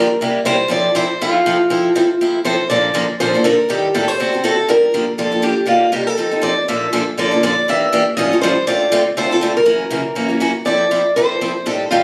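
A brisk swing at 241 BPM in 4/4 drives this lively jazz fragment in F major, cut from a longer piece, where two up-front picked steel-string acoustic guitars with a parlour character share the 12 seconds. One carries the melody between F4 and E5 with fresh strings, audible finger squeak and a plate reverb, while the other, bright and boxy, supplies accompaniment from Gb2 to A4 through changes such as Bbmaj9, A7alt and Gb7 before settling on Fmaj7 at 10.7 seconds. The sound has the close, wet feel of a small room captured on a phone, with added studio reverb and compression.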